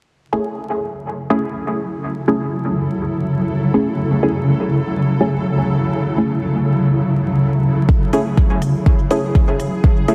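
Hazy and nocturnal, this dub techno excerpt moves at 123 BPM in a straight 4/4, sitting on a single F# minor seventh chord throughout. A muted, detuned sawtooth chord stab opens at 0.3 seconds, its deep, evolving tone shaped by a filter sweep, chorus, phaser and a cassette-tape grain, with dub echo trailing each short, sharply attacked hit. A granular cloud pad enters at 1.2 seconds, a blurred, full-bodied sine texture with a slow attack, long release and its own reverb, holding mellow sustained chords alongside the stabs. Both of these parts breathe with sidechain pumping. A deep, up-front electronic kick arrives at 7.9 seconds, joined shortly after by faint, smooth hi-hats touched with dub echo. The mix is dense and heavily limited, set in a lush hall reverb and dusted with vinyl crackle.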